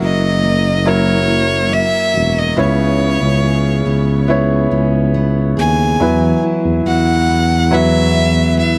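An intense violin with airy bow and vibrato sings the melody over a brilliant concert grand piano, a picked jumbo acoustic guitar's full-bodied arpeggios tucked in the background, and a punchy, mellow tuba up front carrying the bass. The tape echo on the violin adds a trail to this emotional, heartfelt pop ballad at a slow 70 BPM in 4/4, moving from F#7 through C#m7 to Esus2. The dry, close 1970s-style studio sound keeps the piano's deep bass and long sustain vivid in this short excerpt cut from a longer piece.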